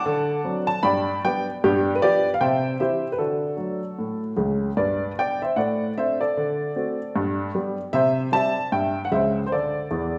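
Stride piano jazz with a swinging, playful mood, this brief cut from a longer piece features a solo upright piano moving through a lively, swung 4/4. The piano sounds woody and intimate, sitting up front with audible action noise and a slightly detuned, natural character that gives it a homely charm. Its range stretches from deep bass notes up into the bright upper register, filling the texture on its own. The harmony circles through dominant-seventh turns back to the home chord, shifting into a second section around 4.8 seconds, and a short fill arrives near 9.9 seconds just before the close. A reverberant recital-hall ambience surrounds the instrument, lending the playing a spacious, church-like bloom.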